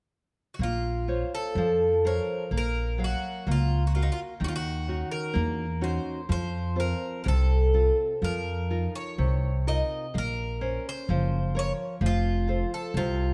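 A bright, metallic Irish bouzouki picks the longing melody on its double strings up front in this mournful fado-style ballad, entering at 0.5 seconds at a rubato 63 BPM in Bb harmonic minor, over a full-bodied, fingerpicked nylon-string guitar with a deep classical tone and a woody pizzicato upright bass, also up front, as the chords move from Bbmadd9 through Gbmaj7/Bb, Ebm7, F and F7sus4, all captured with close, detailed microphones and light reverb.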